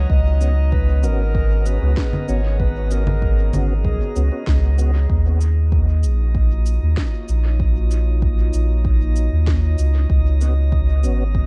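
Ambient dub in Eb minor at 96 BPM, this deep, spacious passage from a longer piece rests on a round, up-front sub bass, a deep electronic kick, and produced shaker, woody snare and congas sent through dub echo, all within an echo-heavy digital ambience. A smooth-topped solo clarinet carries a classical-style melody through dub echo until 4.4 seconds, while a clean tonewheel organ adds background stabs with chorus vibrato, slow rotary speaker and dub echo, returning near the close at 10.4 seconds. Underneath, a warbling, nostalgic, lo-fi tape-like pad holds detuned, mellow chords, and a glassy, drifting-overtone texture shimmers alongside, both with chorus and reverb, as the harmony moves between Db7sus4 and Ebm9.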